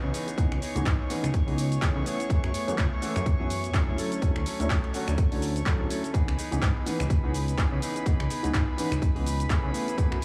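Nostalgic and funky, this filtered disco house excerpt moves at 125 BPM in C# minor with a swung 16th-note feel, cycling through chords from C#m9 to F#m11 and Dmaj7. An overdriven house kit of finger snaps, handclaps, hi-hat and shaker enters at 0.1 s, its hats and percussion pumping, and a punchy, overdriven electronic kick joins up front at 0.4 s, while a fat, detuned, wave-folded analog bass, a clean, picked guitar riff with 12-bit sampler grit, and a reedy chamber violin section holding sustained chords all pump under a low-pass filter. A boxy concert grand piano with phaser and sampler grit plays accompaniment in the background, a tube shaker is barely audible, and everything sits in a small digital room ambience.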